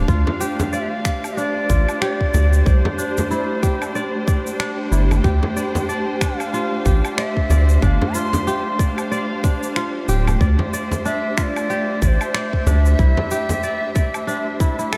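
A swung sixteenth-note groove in 4/4 drives this organic downtempo excerpt. A tight, up-front electronic kick and a tape-warm layer of electronic cabasa, finger snaps and woodblock sit in studio ambience, joined by a deep, close and dry frame drum played with hard hands. Underneath, a round analog bass with tube saturation gives a dark, sine-like low end until it drops out at 13.1 s. A muted, con sordino string section holds veiled, lush chords that pump with sidechain, while a fingerpicked kora rings out crisp arpeggios through a diffuse ambient delay. From 0.7 s a bright, reedy bansuri carries the melody with a pure straight tone and tongued notes through its own delay, over harmony that circles between Dm7, C and G5, all of it soaked in a huge, dreamy reverb that leaves a mystical, earthy haze.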